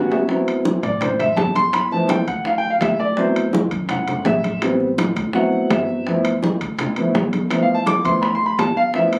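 A phone recording made in the room catches this short Afro-Cuban jazz excerpt with a light club reverb, as a woody, up-front upright piano opens with a fill and then takes a solo from 0.3 seconds over D13, G13 and Am7 changes in D mixolydian at a lively 166 BPM in straight 4/4. Beneath it, a dark, pizzicato upright bass on steel strings holds the low end. Ringing medium-tuned congas, round low-tuned bongos played with soft hands in the background, and close, metal-shelled timbales fill out the sophisticated percussion.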